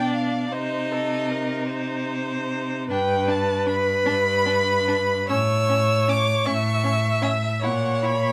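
In light reverb, this serene, lyrical slow romantic movement for string quartet unfolds at 51 BPM in a rubato 6/8, with the first violin singing a rich, smooth melody high above, the second violin holding a focused inner line, the clear viola adding even accompaniment and the intense cello carrying the bass, all four bowed with vibrato through this 8.3-second fragment cut from a longer piece.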